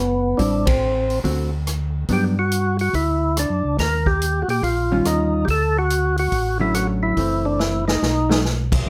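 Soulful and bluesy, this brisk soul jazz organ trio cut swings at 142 BPM in D major. A percussive, lightly overdriven tonewheel organ carries the melody through a slow rotary speaker with key click. A round, dark second organ handles the bass with chorus vibrato. A clean, picked hollow-body jazz guitar comps from 0.4 seconds, drops out, and returns at 4.9 seconds. A punchy, natural drum kit, heard on kick, snare, hi-hat, ride, crash and rim clicks, joins the band on an accent at 0.6 seconds and plays a fill near the close, all in moderate studio reverb.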